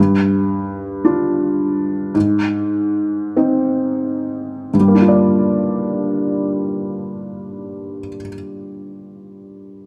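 Close, detailed and intimate, with light reverb and audible action noise, this fragile, longing classical fragment cut from a longer piece features a soft, boxy felt-muted upright piano up front, playing a rubato accompaniment in 6/8 that slows during its first 4.7 seconds before moving into a new section over a Gm7 chord.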